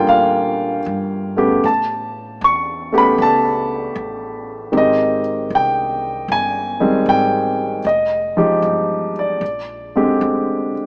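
A moderate plate reverb with a 3.3-second tail lends space to a small-speaker sound in this short excerpt from a tender, romantic jazz ballad. It moves at a relaxed 77 BPM in 4/4 with a gentle swung eighth-note feel, tuned slightly low to A4 = 439 Hz. A warm grand piano carries the accompaniment up front from the opening second, intimate and natural, its hammer and key action faintly audible as it spans from Db3 up to C#6. Beneath it, a dark, woody upright bass with steel strings plays pizzicato in the low register, sitting well back from the piano in the mix. The harmony drifts from Gm7 through A9 and Abmaj7 to Fm9, arriving on a rich Bb13 near 9.4 seconds before the passage ends at 10.9 seconds.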